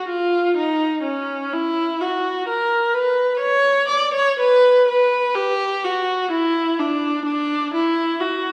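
A wet recital hall reverb, with a decay of about 1.7 seconds, surrounds this short excerpt of a baroque-style suite movement for unaccompanied viola. A single bowed viola plays alone from 0.0 to 8.5 seconds, sitting up front in the mix yet carrying a slightly distant quality within the hall. Its rich tone moves between C#4 and D5, shaped by vibrato and expressive portamento slides between notes. The music is in B minor and 3/4 time at 63 BPM, with a rubato feel and tuning set to A4 = 441 Hz. The mood is flowing and introspective, like a private meditation heard from a concert seat.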